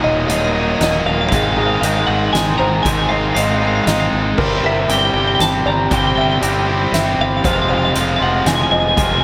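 A straight-feel 3/4 pulse at 118 BPM carries this melancholic, cathartic post-rock excerpt, cut from a longer piece. A soft-mallet drum kit enters at 0.3 s, with dark cymbals, a fat snare and a boomy kick sounding natural in a hall-like space. Underneath, a growling fingered electric bass adds punch and overdrive, while a distorted, compressed electric guitar and an up-front, hollow-bodied overdriven semi-hollow guitar share a riff. On top, a clean, twangy twelve-string electric guitar sings the bright melody through digital delay. A felt-muted upright piano sits in the background with intimate, short-sustained arpeggios that also pass through digital delay, its action noise audible. The harmony moves from Ebm to Ab6, then C7/G and Fm, all within light reverb and a small room ambience.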